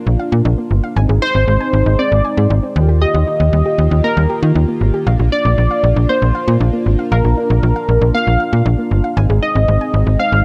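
This pop excerpt moves at 117 BPM in a straight 4/4, with a nostalgic, wistful mood and a dark, warm production softened by light reverb. A slap-like FM bass sits up front from 0.1 seconds, its snappy, metallic attack giving the low end a digital bite. Also forward in the mix, a punchy, funky polysynth carries the melody between Bb4 and F5, its vintage sawtooth tone warbling through chorus and tape echo. Beneath it, a chorused pulse-width pad holds sustained chords with a shimmering, retro quality. A soft, round pluck plays arpeggios in the background, gently coloured by its own chorus and tape echo. The harmony centres on Bb mixolydian, moving through Bb, Ab and Ebadd9 before returning to Bb and then Ab.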